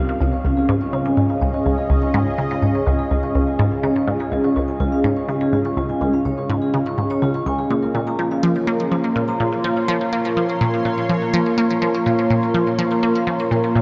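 A straight 4/4 pulse drives this hypnotic, expansive piece of sequencer-driven space music, cut from a longer work. An up-front, squelchy blip pluck with a ring-modulated bite and phaser plays a low, resonant riff, while an evolving, full-bodied sawtooth pad with a sub octave holds sustained chords up front. A metallic vibraphone played with medium mallets and the motor off fades in with airy, delayed arpeggios across the whole 13.8 seconds. The dark production sits in a huge, wet reverb as the harmony moves from Db to Bbmadd9 at 7.7 seconds.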